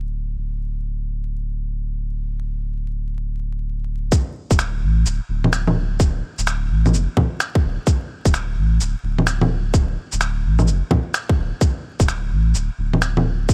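A deep, round sine sub bass opens this ghostly, rainy future garage fragment alone, its sustained, fast-attack notes pumping from sidechain compression beneath a layer of vinyl crackle. At 4.1 seconds a tight, overdriven electronic kick drum arrives up front, carrying studio reverb from a large room, alongside a pitched-down, muffled shaker, finger snaps and bongos that sound sampler-style, compressed, low-pass filtered and also driven with overdrive. The swung sixteenth-note feel and the otherwise close, dry sound carry through until the cut ends at 13.5 seconds.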